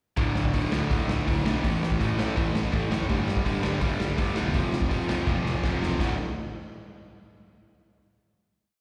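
A two-step groove on a gritty, punchy raw garage drum kit drives this short, energetic and upbeat punk rock piece at 165 BPM in 4/4, with an up-front overdriven electric guitar pounding eighth-note power chords through slapback echo over D5, A5, G5 and F5, a second raw garage guitar chugging its own driving eighth-note power chords further back, and a growly fuzz bass churning eighth notes beneath, all captured like a live gig through the venue's PA with recital hall reverb, until a drum fill at 5.3 seconds leads into a final D5 chord at 6.0 seconds.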